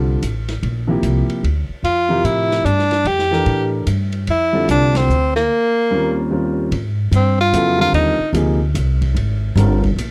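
A dry, close 1970s-style studio sound frames this searching, open modal jazz in swung 3/4 at 148 BPM, where woody pizzicato upright bass and a vintage concert grand piano with deep bass support a clear tenor saxophone melody with light vibrato and scooped notes, while a dark, smooth open jazz drum kit with a boomy kick sits lower behind them, the band hitting an accent at 4.9 s before a break from 5.5 s and a turn to Ab lydian at 6.7 s.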